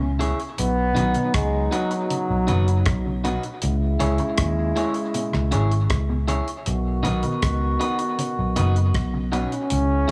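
Roots reggae at 79 BPM in 4/4, serious and laid-back, moving between C#m and B in a short excerpt cut from a longer piece. A punchy solo trombone with vibrato carries the melody up front until 3.2 seconds and returns at 9.3 seconds over a mellow, distant trombone section playing a tight second line, both touched with tape echo, while a round, foam-muted fingered bass sits up front. A slightly broken-up picked guitar with tape echo adds accompaniment, a dark envelope-filtered guitar plays arpeggios in the background, and a cloth-damped, thuddy drum kit with a tight kick, hi-hat and rim click keeps a dry pulse in a small room with light reverb.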